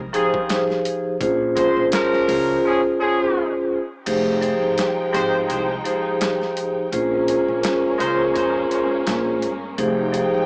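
Boom-bap hip-hop at 84 BPM in F minor, this tough, gritty fragment of a longer piece swings its 16ths over a chord cycle of Fm9 and Bbm9. A compressed, pitched-down sampler-style kit supplies a thumpy kick and a medium-tuned snare with hi-hat and crash. A woody, dark upright bass plays pizzicato on gut strings underneath. Up front, a metallic vibraphone struck with medium hard mallets rings with a slow motor vibrato, filtered and cassette-tinged in a boxy small room. A jazz-style horn section adds distant, roomy stabs through tape echo until 8.2 s. At 4.1 s the kick drops out and a bowed chamber string section enters with expressive, warm sustained chords, all in a dry, gritty mix that sounds like it is playing through a small speaker.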